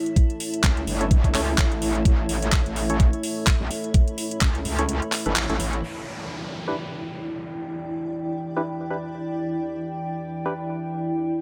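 Bass house at 127 BPM in E dorian, with a swung sixteenth-note feel, gritty and bouncy in mood, cut from a longer piece. A deep, moody analog pad of detuned, wave-folded chords and a blurred, cloudy granular pad with its own built-in reverb hold sustained harmony from the start to 11.4 seconds, both pumping against the sidechain. Up front, a knocking, layered electronic kick joins a tape-warm garage kit with metallic hats and handclaps, while a metallic, aggressive FM wobble bass enters at 0.6 seconds, distorted, overdriven and bright with chorus. A hollow, percussive organ stab with a dark, decaying tone, chorus and delay sounds from 1.0 to 10.5 seconds. The kick drops out before a band accent at 5.4 seconds, and at 5.8 seconds the drums and bass stop as the harmony moves to Em7 and a downlifter enters, all within a light reverb.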